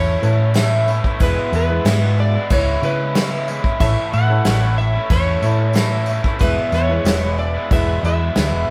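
A brief cut of hopeful, open-road folk and heartland rock in E major at 92 BPM opens with the band playing live in one room: a slightly broken-up electric slide guitar carries the melody over a shimmering, octave-doubled twelve-string acoustic, a round, punchy hollow-body bass, a lo-fi overdriven garage guitar riff, a woody, slightly detuned upright piano and a very quiet, flute-like tonewheel organ through a rotary speaker. A jingly vintage tambourine slips in at 0.2 s and a soft brush kit with dark cymbals and a tight kick follows at 0.6 s, with the bass and drums up front as the chords move from A to E, C#m7, A and back to E.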